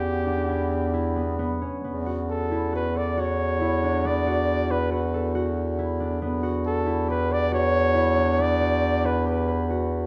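A warm flugelhorn melody with light vibrato and scooped notes opens this restless, pensive piece of contemporary chamber music in 5/4, joined from the first moment by mellow, ringing, thumb-plucked harp arpeggios and a distant, roomy bass clarinet sounding a low E beneath, the trio heard in a moderate recital hall reverb.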